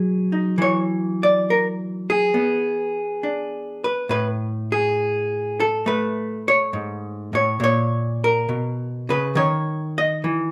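A clean, picked hollow-body electric jazz guitar plays alone and up front with light reverb, swinging at a relaxed 68 BPM in 4/4 through a late-night passage of B6, E9, Amaj7 and A#m chords in this short excerpt from a longer solo jazz piece.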